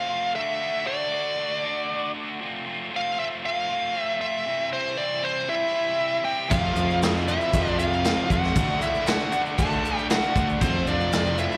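Classic rock at 117 BPM in a straight 4/4, swaggering and driving, heard live through a venue's PA with recital hall reverb in this short cut from a longer piece. A dark, smooth lead guitar carries the melody up front with overdrive and slapback echo over a bright, picked distorted electric guitar riff from 0.0 seconds, and a very quiet octave-fuzz lead guitar adds a second line at 5.5 seconds. At 6.5 seconds the band joins in. A bright, double-tracked cranked stack guitar with spring reverb and a warm overdriven electric guitar fill out the riff in the background, while a round fuzz fingered electric bass rumbles beneath. A vintage drum kit adds a punchy kick and dark cymbals, and a grainy tube shaker sits close and dry behind them, all over chords moving D, F, C, F, D, F.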